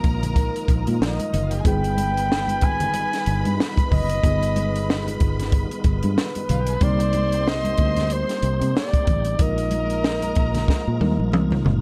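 A breathy, mellow flugelhorn carries the melody from 1.1 seconds, with vibrato and scooped notes, over a silky, bittersweet slice of lush 1970s-style soul in a swung 4/4. A rich bowed string section sings a second line, while a worn, slightly out-of-tune electric piano with phaser and a lightly overdriven tonewheel organ with slow rotary speaker sit in the background, and a round, foam-muted fingered bass and a dry cocktail kit with punchy kick and high-tuned snare sit up front. Very quiet, soft-handed congas add texture within a dark, small-room production, and the drums close with a fill at 10.7 seconds.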